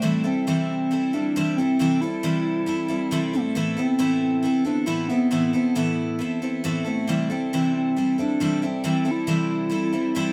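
A wet studio room and a faint mains hum surround this short, nostalgic rock excerpt with an open-road feel, moving from C6 to Amadd9 and back to C6 in a straight 4/4. A picked twelve-string acoustic guitar sits up front, bright and shimmering with its octave-doubled strings, carrying the accompaniment. Alongside it, a reedy, woody FM lead with chorus and vibrato sustains the melody between A3 and E4.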